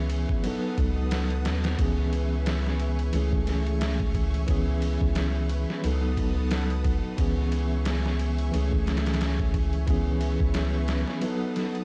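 A swung 4/4 groove at 89 BPM, with a 57% swing on the sixteenths, drives this melancholic, hypnotic trip hop clip, cut from a longer piece. The sampler-style drum kit sits up front, compressed, pitched down and muffled, with a thumpy kick, a medium-tuned snare and ride cymbal carrying a tape-warm, small-room character. Beneath it, a soft dub sub bass, deep and round with tube saturation, holds low between C#2 and D#2 until it drops out at 11.0 s. A bell-like tine electric piano, bright and clean, plays accompaniment through harmonic tremolo and tape echo, while a string machine voicing cellos adds sustained, full chords coloured by ensemble chorus and 12-bit sampler grit. The harmony circles over a C# bass, moving through B7/C#, C#m7, Amaj7/C# and E6/C# twice before landing on B7, all in a dark, dry production.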